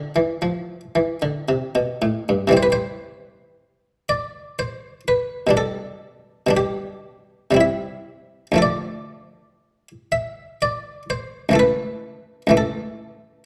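A solo harpsichord with its buff stop engaged opens on a C major chord, its muted, lute-like pluck sounding airy and close. This is a solemn, introspective fragment of a baroque-style suite movement in 3/4 at 60 BPM, cut from a longer piece and played with rubato and uneven beats. After a brief opening passage, a longer second section begins at 2.5 seconds and moves through G over B, back to C, then D minor, settling on A over C# at 11.6 seconds. The instrument spans C#2 to E5 and has an Italian-style character, its own tone dry and up front. Around it, a large studio reverb lends the room a long, wet tail.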